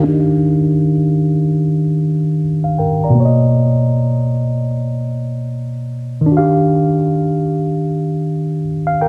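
A swung sixteenth-note groove at 77 BPM in 4/4 sets up this dreamy, cosy hip hop fragment, carried entirely by a tine electric piano that plays accompaniment from 0.0 to 9.1 seconds. The piano sounds worn and slightly out of tune yet clean, heard through a combo amp and placed up front, with a low-pass filter sweeping across it as it moves from Ebmaj9 to Bmaj9 at 3.2 seconds and back to Ebmaj9 at 6.3 seconds. The dark production keeps the room nearly dry, giving the chords a close, intimate feel.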